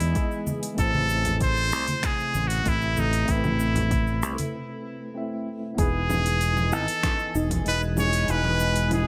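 A nasal trumpet with a straight mute leads up front, its brilliant, vibrato-tinged pop melody riding digital delay over a relaxed, smooth sunset chillout groove cut from a longer piece, moving from Emaj7 to Amadd9. A clean tine electric piano, a growly, punchy fingered bass and a shimmering, ethereal pad with chorus and phaser in the background support it, while an overdriven deep house kit with metallic hats, a deep electronic kick and hard-handed congas drive the rhythm, the congas dropping out at a break at 4.5 seconds. From 5.8 seconds a soft, round pluck with lush chorus and delay adds gentle arpeggios as the harmony returns to Emaj7, all set in light reverb.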